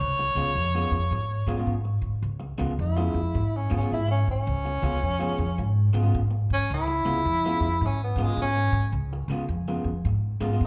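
A swung 4/4 shuffle drives this swaggering, gritty electric blues fragment, cut from a longer live club gig heard through the venue's PA, where a woody plucked upright bass sits up front, a slightly broken-up, compressed electric guitar from a small old amp joins at 0.2 s with a picked riff and slapback echo, and a mellow, soft-edged tenor saxophone with jazz vibrato and its own slapback sounds distant yet forward, taking a solo from 2.2 s before dropping out at 8.9 s, all opening on a Db7 chord in small-room reverb.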